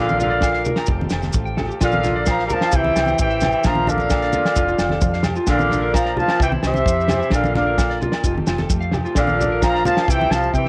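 A carefree, joyful highlife guitar band groove at 130 BPM opens with an up-front horn section carrying the melody over a raspy, gritty tenor saxophone line, clean picked electric guitar arpeggios, a foam-muted fingered bass, a dark, very quiet steel-string acoustic guitar and a reedy combo organ holding chords, as low-tuned congas and grainy maracas join at 0.1 seconds and a damped 70s drum kit with a fat snare and agogo bells enter at 0.4 seconds, cycling through Bb, Fadd9 and C in a light-reverb home cassette recording where the horns, sax, electric guitar and drums carry tape colour.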